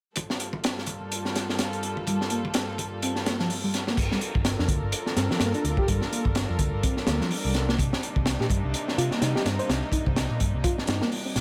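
A punchy, saturated breakbeat kit sits up front with a high-tuned snare and dark cymbals, giving this swaggering, gritty swung breaks excerpt its crunch, while bowed chamber strings hold soft, intimate sustained chords roughened by 12-bit sampler grit and pumping against the sidechain. A reedy, mellow electric piano riff with fast tremolo and tape echo enters at 2.1 seconds. The kick drops out briefly before a round, hollow-body electric bass with tube saturation arrives at 4.0 seconds, as the harmony moves from Gm9 to Cm9 in a small room.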